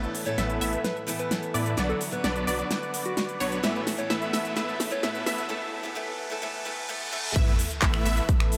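Uplifting and euphoric, this festival progressive house excerpt at 129 BPM builds over a picked steel-string acoustic guitar, detuned supersaw chords under a sweeping low-pass filter, a phased sawtooth pluck arpeggio, a thick saturated sub bass, a very quiet lush pad, and a round, keys-like FM lead that carries the melody from 0.3 to 5.0 s, with the guitar, supersaws, pluck and bass all pumping to the sidechain over Asus2 and Bm chords. A tape-toned big-room kit with a huge snare, handclaps, finger snaps, shaker and crisp hi-hat drives a drum fill into a break at 5.5 s, where a reverse cymbal and riser lead to the drop at 7.4 s. There a punchy, up-front electronic kick lands with an impact, all bathed in a huge ambient reverb.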